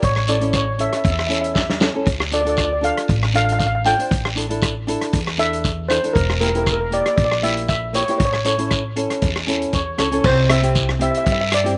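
A lightly swung sixteenth-note calypso groove in 4/4 carries this cool, brooding excerpt from a longer piece, with a drum fill at 1.6 seconds and a shift to a new section at 10.2 seconds. An airy, shimmering steel pan leads up front, played with medium rubber sticks, over a fingerpicked flamenco guitar with audible finger squeak and slapback echo, and a woody, growly pizzicato upright bass. A muffled, lo-fi vintage drum kit with dark cymbals and a punchy kick, along with a raspy guiro, fills out the dry, outdoor sound.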